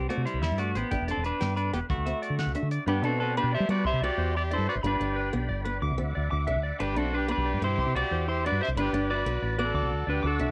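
Highlife guitar band music with a danceable, warm mood, moving in a lilting 12/8 over a cycling progression of Cadd9, G and Dadd9 chords in this short fragment of a longer piece. A clean, up-front electric guitar carries the melody with analog delay, while a boxy parlour steel-string acoustic plays picked accompaniment in the background and a round, dark, foam-muted fingered bass sits prominently beneath. Above them, a twangy electric guitar at the edge of break-up plays high fingered arpeggios, also treated with analog delay. A dry, damped 70s drum kit with a fat snare and tight kick drives the opening until 2.8 seconds, and at 2.9 seconds a bright trumpet with light vibrato enters on a pop-style second line while a very quiet, reedy tonewheel organ holds sustained chords with key click, chorus vibrato and a slow rotary speaker. Light reverb and the softened sheen of a home cassette recording give the whole track an intimate, vintage feel.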